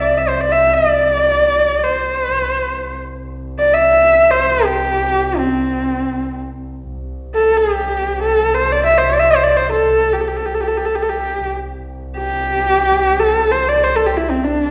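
Vast and galloping in mood, this excerpt of Mongolian folk music unfolds as two statements of the same phrase, the second beginning at 6.9 seconds. A single bowed horsehead fiddle carries the melody from start to finish, its horsehair strings giving a nasal, husky voice that sits up front in the mix. The player uses vibrato and portamento, and the tone stays focused with a slightly boxy edge. Beneath it, one muted double bass holds a low bowed drone throughout, dark and veiled under its mute and touched with its own vibrato, far quieter than the fiddle. Both parts sound in a church or concert hall, where a wet recital-hall reverb lingers around each note.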